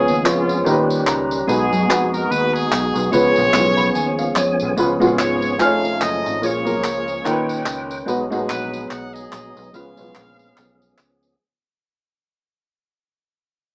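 Recorded live by a band in a small, reverberant room with a small-speaker sound, this hopeful, uplifting uptempo gospel cut at 145 BPM swings as a clear, pop-style horn section with light vibrato carries the melody over a dark, woody, slightly detuned upright piano with audible action noise and fills at 0.9 and 3.5 seconds, fat, lightly overdriven tonewheel organ chords with key click, chorus vibrato and a slow rotary speaker, a round, punchy fingered electric bass, and close tambourine, egg shaker and group handclaps, before the music fades out from 4.8 seconds.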